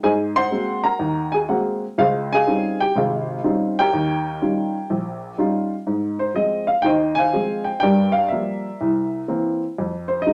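A lone upright piano, woody and slightly detuned with a short sustain, sits up front and opens on an Ab9 chord in a playful, swinging solo jazz feel. Cut from a longer piece, the passage moves through lush extended chords before a new phrase at 5.9 seconds turns through Ab6, Gm7, C7 and Fm7, with the piano reaching from low bass notes up into the treble. A wet studio reverb with a brief decay surrounds the instrument.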